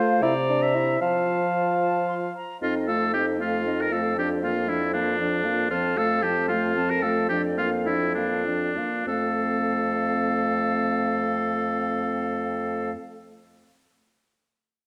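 Cheerful and spirited, this brief cut from a longer piece is a quick classical-period movement for wind quintet in 6/8 with a straight feel. The silver concert flute carries the melody from a distance, its pure metallic tone touched with vibrato and tongued articulation. A clear oboe sits up front with the second line, its tone smooth on top, while a mellow clarinet supplies accompaniment from the background. A close-miked French horn adds warm accompaniment and a bassoon with light vibrato anchors the bass, all five playing throughout the full 12.9 seconds. The performance slows down between 4.9 and 9.1 seconds, and the whole ensemble is heard in a wet recital hall with a dark, warm production.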